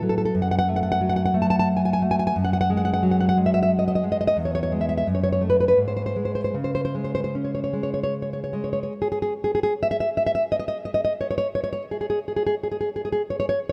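Set in a lilting three-beat metre and played with free, elastic rubato, this romantic piece for solo classical guitar unfolds with a nostalgic, tender mood. A single nylon-string guitar carries everything from the opening second. Its tone is warm and thumb-plucked, with finger squeak audible, and it sits up front across a range from E2 to A5. The harmony drifts through F#madd9, a rootless Emaj9 over F#, E6 and F#m before settling on a bare C#5, and a second section begins at 8.9 seconds. A huge ambient reverb with a long decay surrounds the guitar and lets each note hang in the air, and the passage ends at 13.7 seconds as a fragment cut from a longer piece.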